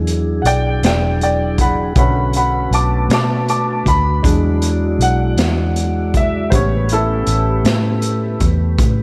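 Slow blues in 12/8 at 53 BPM in E mixolydian, this soulful, laid-back excerpt features a clear, woody, slightly detuned upright piano with slapback echo taking the solo over E9, Bm7 and A9 chords. Beneath it sit a soft, flute-like tonewheel organ holding sustained chords through a slow rotary speaker, a round, foam-muted fingered electric bass, and a gritty, saturated breakbeat kit with a punchy kick and high-tuned snare, all set in a lush hall reverb that gives a big arena sound.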